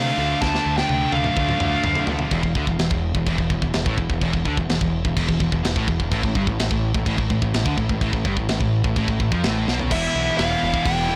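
This dark, relentless heavy metal excerpt opens with a smooth, overdriven lead guitar carrying a melody in the upper register, trailed by tape echo, over a dense wall of picked riffing guitars. Beneath it, a scooped high-gain guitar and a sludgy distorted guitar grind through the full 11.2 seconds, while a growling, overdriven electric bass anchors the low end and a double-tracked heavy high-gain guitar sits in the background. The tight metal drum kit enters at 0.4 seconds with a fill across crash, hi-hat, kick, snare and toms, its medium-tuned snare and tight kick placed up front with a rolled-off top. At a straight 126 BPM in E phrygian, the harmony moves from Dm through E7sus4 and Gadd9 in the middle stretch, where the lead and the double-tracked guitar drop out and the two remaining riff guitars, bass and drums churn on. The lead and double-tracked guitar return at 9.9 seconds on an Em chord, just after another drum fill. 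The whole mix has a blown-out, saturated character with light reverb, giving the grinding guitars and bass a crushing, gritty weight.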